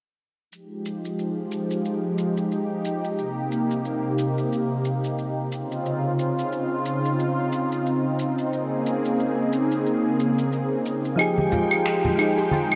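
A lush, thick unison pad with chorus and phaser sustains airy chords through this wistful, smooth sunset chillout excerpt in F minor at 90 BPM, moving from Fm9 through Cm7, Dbmaj9 and Bbm11, with an overdriven electronic layer of shaker, claves and finger snaps ticking beneath it with a gentle swing. Near the end, at 11.2 s, mellow electric-piano-like synth keys come up front with chorus and analog delay, joined at 11.4 s by a dark, round pluck playing arpeggios in the background and bright congas struck with soft hands. The whole mix is dreamy and soaked in a huge ambient reverb.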